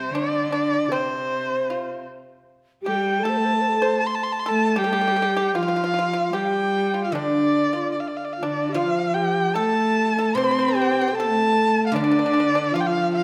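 Tender and wistful, this rubato excerpt of Chinese chamber music carries a warm, up-front erhu melody with vibrato and portamento above an airy, close-miked low xiao, a distant, smooth cello, a dry, percussive fingerpicked pipa, and a silvery guzheng in the background that drops out after 0.9 seconds and rings again from 7.1 seconds, set in a wet recital hall reverb.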